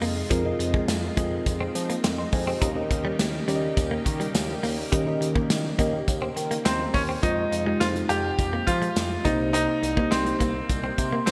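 1980s-style pop in F minor at 104 BPM, moody and nostalgic, built on a soft, round FM electric piano with chorus, a thick detuned unison pad, a clean direct-recorded electric guitar riff drenched in lush chorus and delay, a smooth nasal synth bass and a punchy studio drum kit with gated reverb, plus a jingly tambourine tucked in the background. The electric piano plays a short fill at 6.4 seconds, and at 6.7 seconds a brilliant, intimate grand piano with audible action noise enters up front carrying the melody through a delay. The harmony moves from Fm7 to Eb7 and then from Fm7 to Cm7, all set in a moderate hall reverb with a bright digital 1980s sheen, in a passage cut from a longer piece.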